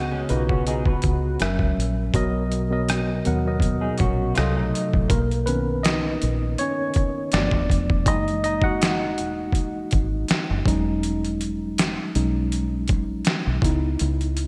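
A worn, slightly out-of-tune tine electric piano, lightly overdriven and up front, opens this sensual 81 BPM neo-soul and R&B excerpt in B major over a dark, round, foam-muted fingered bass. A picked electric guitar through a small old amp adds a lo-fi, slightly broken-up second line with analog chorus, and from 0.3 seconds a gritty, pitched-down boom bap sampler kit with a thumpy kick and gated reverb sets a lightly swung 4/4 groove. At 5.1 seconds the guitar drops out and the piano takes a solo through lush chords like Bmaj9, F#13 and Emaj13, all bathed in a moderate, lush hall reverb and bright 1980s-style digital sheen.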